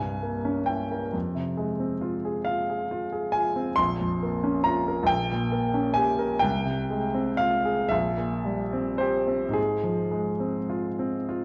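A clear, intimate grand piano, up front with audible action noise, opens on a C7b9 chord and settles into F minor for a yearning, melancholic romantic nocturne in a rubato 9/8 at roughly 35-46 BPM, ranging from Bb1 to C6 through a brief passage cut from a longer piece, heard in a wet recital hall with worn, warbling old cassette tape pitch drift.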